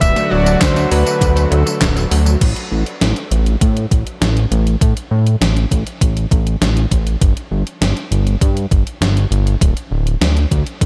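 Light reverb gives this cinematic, nocturnal synthwave excerpt a sense of space, with a fat, detuned analog bass sitting up front, pumping against a thumpy, overdriven electronic kick. The track moves in a straight 4/4 at 100 BPM. It opens on a D chord: a clear alto saxophone carries the melody with vibrato and tape echo, a brassy, bold sawtooth pad holds sustained chords through chorus, and a very quiet, warbling unison pluck spins bright arpeggios. The saxophone stops at 2.1 seconds, and the pad and pluck drop out at 2.4 seconds, where the harmony falls away. From there the bass and kick carry on alongside a gated 80s digital drum machine that has played from the start, with snare, handclaps, hi-hat, tambourine and crash cymbal, all drenched in gated reverb and overdrive. The drum machine has the roomy, sampler-style punch of a kit re-recorded in a large room.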